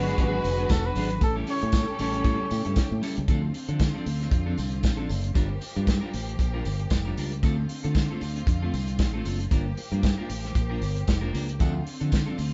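A sultry, driving disco cut from a longer piece, moving at 115 BPM in D minor with a light swing, opening on E9 and A7 before settling into a Dm7 to Gm7 vamp at 3.3 seconds. A vibrato-laden flugelhorn carries the melody over a dark, woody violin section playing sul tasto, both dropping out by about 3.2 seconds, leaving the punchy fingered bass and the up-front soul drum kit, with its tight kick and medium-tuned snare, to drive the groove. A clean, picked electric guitar, a smooth, distant string section holding sustained chords, and a jingly, very quiet tambourine fill out the band, captured live in one room with light reverb and a top end that stops below 7.7 kHz.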